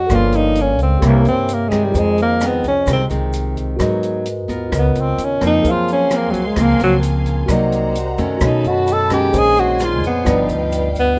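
A breathy, up-front tenor saxophone sings a wistful jazz solo with subtone, vibrato and scooped notes over a smooth bossa nova bed of fingerpicked nylon-string guitar, mellow tine electric piano, woody pizzicato upright bass with a thumpy gut-string tone, a small-room jazz kit with a boomy kick, hi-hat and rim click, and a grainy egg shaker tucked in the background, while a dark, lush bowed string section joins at 5.6 seconds under light reverb.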